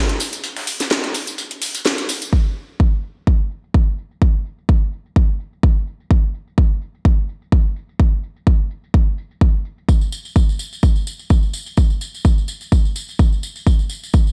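House groove cut from a longer piece, uplifting and euphoric, with a lightly swung feel, where a house drum kit with cracking snare and metallic hats sits up front alongside an acoustic tambourine heard at 0.1 and again from 9.9 seconds, a gritty, overdriven sampler-style kit murmurs in the background until 2.2 seconds, and a punchy, layered electronic kick enters at 2.3 seconds, all in a bright 1980s-style digital production with little reverb.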